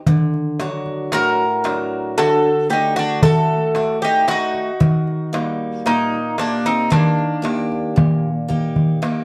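Dark and wistful, this Greek folk excerpt moves at 114 BPM in a straight 9/8, opening with a woody, boxy archtop guitar and a crisp, metal-shelled darbuka before an up-front, metallic bouzouki enters at 1.1 seconds with the plate-reverbed melody over a round mandolin second line, the harmony moving from D to Eb and a darbuka fill arriving at 8.5 seconds inside a dusky, moderately reverberant studio sound.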